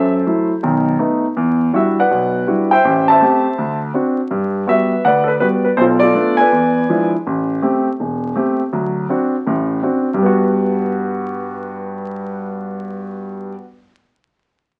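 A solo grand piano carries this short, playful jazz excerpt, its tone warm, present and polished with long sustain, sitting up front in the mix. The tune swings at 163 BPM in 4/4 and G major, with a lilting eighth-note feel. The piano covers a broad range, from deep bass notes around E1 up to A5, moving through rich jazz harmony such as F#m7b5, B7, Em9 and E7b9 before arriving at Gmaj7 at 10.2 seconds. A moderate studio reverb gives the piano a gentle sense of space. The whole take is coloured by the crackle and aged sound of a very old 78 rpm record, lending it a warm charm. The piece runs about 13.6 seconds and is cut from a longer performance.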